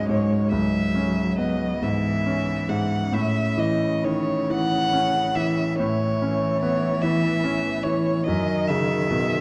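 From the opening moment, a bright, brilliant concert grand piano with deep bass sits up front in accompaniment beneath a smooth, even violin melody sung with vibrato, while a focused, more distant bowed cello carries a second line in this yearning, melancholic, slow romantic piano trio movement, moving in a rubato 12/8 at 42-50 BPM in dotted quarters through C#m, A at 3.1 s and C#m11/F# at 8.3 s, framed by a dark production and the lingering reverb of a recital hall, as a passage cut from a longer piece.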